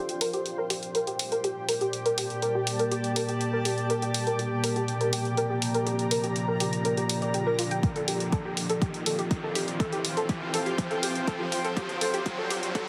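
A deep, moody pad of detuned chords, filtered through a sweep, and a blurred, evolving granular cloud open this dark, melancholic melodic techno build-up at 122 BPM in G minor, both pumping with sidechain and bathed in reverb over a Gmadd9 chord. A soft, round pluck arpeggio with ensemble chorus, cassette tape colour, dub echo and the same pumping sits in front, over an analog-toned electronic hi-hat, while an electronic riser joins at 5.1 seconds. A punchy, layered electronic kick drum arrives up front at 7.8 seconds, all under a huge ambient reverb and a heavily compressed, radio-like mix in this excerpt from a longer piece.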